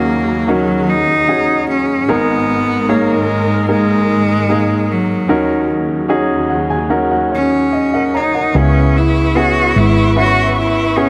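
In a straight 4/4 pulse, this emotional, longing pop excerpt sets a biting, nasal solo cello melody with vibrato over clear, polished baby grand piano accompaniment and smooth-topped, expressive studio strings with portamento, as the piano plays a fill from 6.1 seconds and a growly, round fretless electric bass enters up front at 8.5 seconds, all in light studio reverb.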